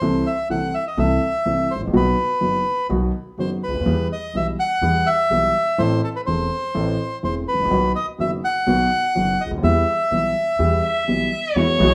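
This melancholic, sultry tango excerpt moves at a rubato 125 BPM in E harmonic minor, where a reedy, dark bandoneon carries the melody up front while a present baby grand piano supplies the accompaniment and a woody pizzicato upright bass holds down the bass line over a cycle of Am/C, B, Em and Am chords. Near the close, at 10.8 seconds, a rich, expressive violin enters with vibrato and portamento, followed at 11.6 seconds by very quiet, veiled stabs from a muted string section. Plate reverb colours the bandoneon, piano and violin, all set within the small-room ambience of a rough home demo mix.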